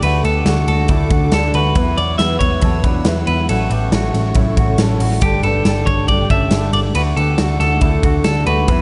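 Youthful and bright, this jangly indie pop passage at 139 BPM in D major sets a clean electric guitar melody with tape echo over a shimmering, octave-doubled fingerpicked twelve-string acoustic guitar, twangy, slightly broken-up arpeggios from an electric guitar through a small old amp with subtle chorus, a dark, round, foam-muted picked electric bass and a punchy big rock drum kit with bright cymbals sitting up front, while a lush, distant string section holds very quiet sustained chords through a D, Esus2, A6, Gsus2 progression in an echo-heavy mix with light reverb.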